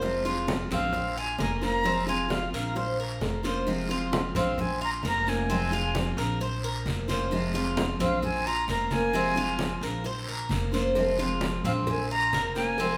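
Nostalgic and warm, this Cuban son and guajira piece in F minor moves at 132 BPM in a straight 4/4, cut from a longer performance. A picked steel-string acoustic guitar with a bright, auditorium sound and a metallic Cuban tres with double, partly octave-doubled strings carry the accompaniment and arpeggios, while a woody, thumpy upright bass on gut strings plays pizzicato underneath. Ringing, low-tuned congas and a raspy guiro run throughout, joined by very quiet, round bongos and cowbell played with soft hands until 3.7 seconds and again from 11.0 seconds. An airy concert flute, close-miked with vibrato and a soft attack, enters at 0.7 seconds to carry an expressive melody above the band. The harmony rocks steadily between Fm and Bbmadd9, and the group sounds like it is playing live in one room, with a moderate large-studio reverb.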